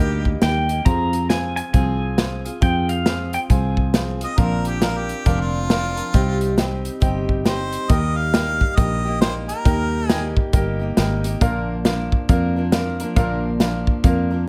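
A dusty, heartbroken slice of honky-tonk and classic country opens on woody, full-bodied picked acoustic guitar with old strings, a warm concert grand piano with deep bass, and a round, foam-muted fingered electric bass, all swinging at 136 BPM in 4/4 over an Eb to Fm progression. An airy, polished country drum kit sits up front with a punchy kick, medium-tuned snare and hi-hat. At 0.4 seconds a twangy, compressed pedal steel guitar carries the melody high in its range, played with fingerpicks, slide and volume swells in a clean, bright tone. The steel hands off at 4.2 seconds to a bright harmonica with light vibrato and a classical touch as the chords move through Bbadd9 and Cm. From 7.9 seconds the harmonica steps forward for a solo over Eb and Bb. Light reverb gives the piece a gentle sense of space.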